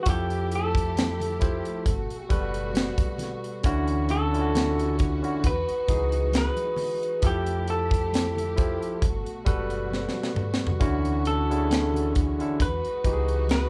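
A lo-fi, slightly broken-up electric guitar melody opens this relaxed, sensual neo-soul R&B excerpt at 67 BPM over a barky, overdriven tine electric piano and veiled, muted strings, joined by a round, dark fingered bass, a tight, dry funk drum kit with a high-tuned snare and a fill at 9.9 seconds, and very quiet, bright congas, all moving through lush major-ninth chords in a lightly reverberant live room.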